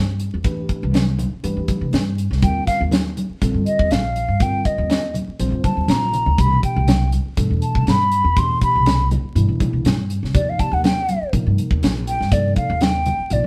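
A close-miked silver concert flute, pure and hollow with vibrato and tongued notes, carries the melody from 2.4 seconds in this slick, funky stretch of electric jazz fusion, cut from a longer piece in C major at 121 BPM in a straight 4/4. Up front beside it, a woody, thumpy pizzicato upright bass on gut strings anchors the low end, while a crisp, polished fusion drum kit with a high-tuned snare and tight kick adds an airy studio snap, broken by a short fill at 6.0 seconds. Congas with thin, damped skins and soft hands sit bright but vintage and band-limited in the background. A mellow tine electric piano, clean and heard through its built-in speakers, comps beneath on chords shifting from Cmaj9 to Ebmaj9 and back, settling on Ebadd9 near the close. The band plays live in one room with a moderate stone-room reverb and a vinyl crackle over the whole.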